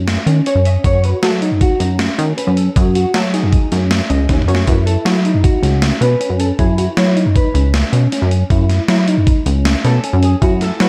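In a straight 5/4 at 157 BPM, this driving, tense progressive instrumental excerpt in F# dorian sets a gritty, compressed boom bap sampler-style drum kit with a thumpy kick and high-tuned snare up front beside a punchy, funky plucky analog bass with a sawtooth and ring-modulated filter pluck, while a tine electric piano plays clean arpeggios through a combo amp with ensemble chorus and a dark, fingered hollow-body jazz guitar solos with subtle chorus, all in a dreamy mix soaked in lush hall reverb, with a drum fill at 4.3 seconds just before the harmony moves from C#sus4 to F#m7 at 4.7 seconds.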